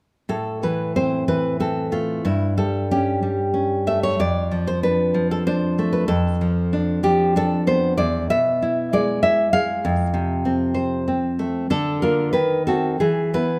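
Romantic solo classical guitar in 3/4 with a wistful, passionate rubato feel, this short excerpt features a single fingerpicked nylon-string guitar, full-bodied and up front with audible finger squeak, ranging from deep bass to high treble as it moves from A minor harmony through darkening chromatic chords to a tense close on E at 13.0 seconds, all within a moderate recital hall reverb.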